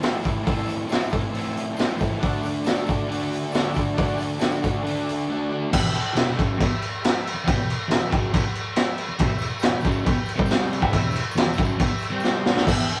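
A raw, swaggering garage rock passage opens with a crunchy, double-tracked overdriven guitar riff and an up-front, saturated drum kit with a high-tuned snare and boomy kick, while a buzzy vintage combo organ holds sustained chords in the background and a faint, jingly tambourine comes and goes, all of it heard as a rough rehearsal-room cassette recording with light reverb that reaches a drum fill at 12.2 seconds.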